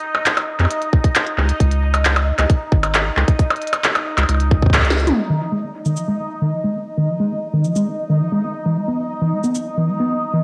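A straight 4/4 pulse at 134 BPM drives this intricate, glitchy IDM piece in F minor, where a clicky, tiny-snared glitch kit of cabasa, handclaps, toms and blips is joined by a tight electronic kick from 0.9 to 4.8 seconds, and a round, nasal analog bass holds the low end before a rubbery square-wave acid bass takes over at 5.3 seconds with a resonant filter sweep, lush chorus and analog delay, beneath a bubbling, detuned sawtooth texture of random filter steps, the home cassette recording set in a wet digital room reverb.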